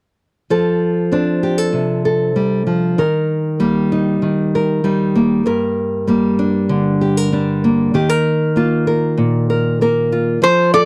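Intimate and melancholic, this folk passage, cut from a longer piece, moves at 97 BPM in a straight 4/4. A fingerpicked nylon-string guitar carries the accompaniment from 0.5 seconds, its small, warm tone sitting up front as it moves through F6, Eb, Gm and Ebsus2 across a range from G2 to Bb4. At 10.4 seconds a metal-body resonator slide guitar takes up the melody, played with fingerpicks and a slide between C5 and D5, and both guitars run until 10.9 seconds. The resonator's bright, metallic, nasal voice stands close and forward beside the warm nylon strings. Light reverb and a dark production frame the pair in a hushed, close setting.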